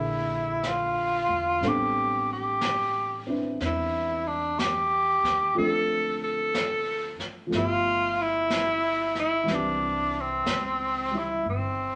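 Tender and late-night in mood, this slow jazz ballad excerpt moves at 61 BPM in 4/4 with a swung eighth-note feel in C major. A bright, up-front tenor saxophone carries the solo melody with vibrato and a soft attack over an intimate baby grand piano whose short sustain and audible action noise give it a natural closeness, while a woody pizzicato upright bass anchors the low end. Brushed snare and hi-hat from a small-room jazz kit join at 0.6 seconds, all set in a wet studio reverb as the harmony moves from Bb7#11 through Am11, Dm7 and G13 to rest on Cmaj7.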